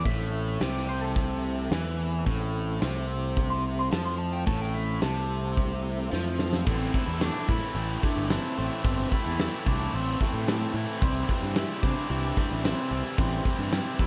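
This swaggering, driving classic rock excerpt opens on a twangy, clean lap steel guitar playing a slide solo with volume swells and slapback echo. Beneath it sit a bright, double-tracked distorted electric guitar riff in overdrive and a very quiet tonewheel organ holding lightly overdriven chords through a slow rotary speaker. The fuzz-soaked picked bass and a punchy gated 80s drum kit join almost at once, the kit up front with bright cymbals, a medium-tuned snare and the sound of a bright stone room. A drum fill leads into a new section at 6.7 seconds, where the organ drops out and the lap steel carries on over the riff. The music sits in A minor at a straight 110 BPM in 4/4, holding on Am until the harmony moves to C at 11.0 seconds. The mix is dry, with little reverb and the guitar and drums pressed forward.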